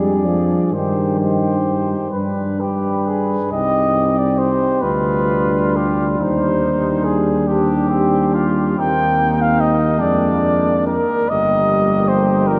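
Tender and warm, this slow classical brass-band hymn in C minor drifts at 42-52 BPM in a rubato 6/8, with a mellow, vibrato-laden cornet singing the melody up front over a distant flugelhorn second line, a dark trombone section in the background, a smooth-topped solo trombone with soft attacks, and a tuba bass placed up front, all bathed in a long, wet cathedral reverb through a brief 12.6-second fragment that moves from Ddim/F to a closing Eb/G.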